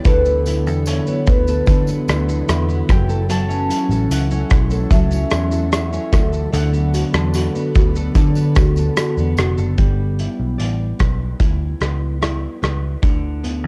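This dreamy, nostalgic indie pop and bedroom pop fragment moves at an unhurried 74 BPM in a straight 4/4, set in G lydian and tuned slightly sharp to A4 = 441 Hz. A fingerpicked nylon-string guitar sits up front with a full-bodied, deep classical tone under a subtle chorus and vibrato, joined by a loose acoustic drum kit whose punchy kick, hi-hat, rim click and shaker breathe in a pumping studio room with a rolled-off top. A dark, round, foam-muted electric bass holds the low end, while a thumb-plucked concert harp rings out the melody through lush chorus, and a very quiet, ethereal ambient pad with octave-up shimmer and detuned sine tones hovers beneath, alongside a jingly, bright tambourine in the background. The harmony drifts from D69 to F#m7 and D6 before the harp, pad and tambourine fall away, leaving guitar, bass and drums to carry the shift to G6 at 9.8 s and a closing Dsus2. Recorded at home on cassette with little reverb, the whole piece has a close, intimate character, with tape coloring the guitar, harp and drums.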